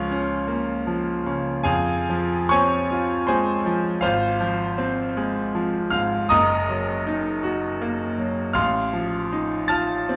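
Solemn and elegiac, this short classical passage unfolds in a flexible, rubato three-four as a solo grand piano plays accompaniment across a span from Gb1 to A6, moving through chords such as Bbm/Db, Fm and Ebm/Gb before settling on F7/A. The piano sits up front with a bright, brilliant and intimate tone, long sustain and audible action noise. The overall production is dark and warm, and a wet recital hall reverb surrounds the 10.2 seconds of playing, cut from a longer piece.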